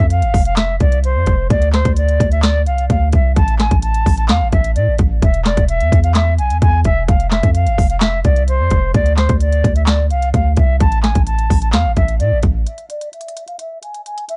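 An airy silver concert flute carries the melody of this melancholic, menacing trap excerpt, its metallic tone softened by a low-pass filter and echoed by an analog delay, with tongued notes and an unsteady vibrato. Beneath it sits a deep, boomy 808-style bass with a sine core, a noise layer and a fast attack that decays into mellow low notes, placed up front alongside an electronic, produced trap kit of hard-clipped kick, sharp snare, crisp hi-hats and handclaps. The beat runs at 129 BPM in 4/4 with a half-time feel, in A harmonic minor, moving through F5, Csus2, A5 and E5 chords. At 12.7 seconds the bass and harmony drop away, leaving flute and drums to carry a short closing passage. The sound is dry and gritty, with a cassette-tape character and a dulled top end.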